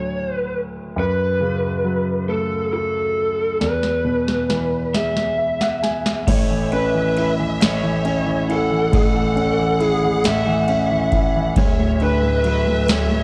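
An overdriven lead guitar through a small cranked amp carries the melody over a polished, present grand piano from the start of this tender, romantic six-eight pop ballad in A major, moving slowly at 45 BPM with a straight feel. A booming analog drum machine with a deep kick and crisp snare enters at 3.6 seconds with a fill, while the piano adds its own fill before a distant, lush violin section joins with bowed vibrato at 6.3 seconds. Light reverb and digital ambience sit around a worn cassette-tape sound with warbly pitch drift, giving this cut from a longer piece a worn, warbling cast.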